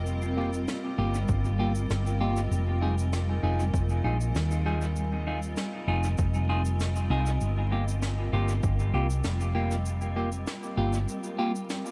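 A blurred, detuned granular pad and a round, up-front hollow-body bass open this hazy, spacious ambient dub fragment, drifting between F9sus4 and Fm7 as a small-room shaker and brushed snare trail into dub echo. A clean, dark semi-hollow guitar adds stabs coloured by phaser and echo, while an overdriven, punchy electronic kick enters at 1.3 seconds and drops out at 8.8 seconds. Vinyl crackle and an echo-heavy mix give the passage its dusty, floating air.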